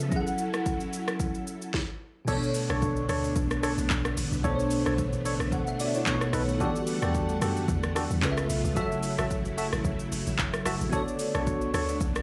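Overdriven, up-front afro-pop drums with a deep kick, sharp snare, metallic hats, handclaps, rim clicks and shaker drive this late-night, soulful amapiano excerpt in B minor at 111 BPM, where a bell-like tine electric piano accompanies and a warbling vintage string-machine viola section holds sustained chords from the start, a filter sweep opens the first 2.3 seconds, and then a hollow, echoing organ stab enters at 2.3 seconds followed by a round, dark log drum bass at 2.7 seconds, all set in light studio reverb.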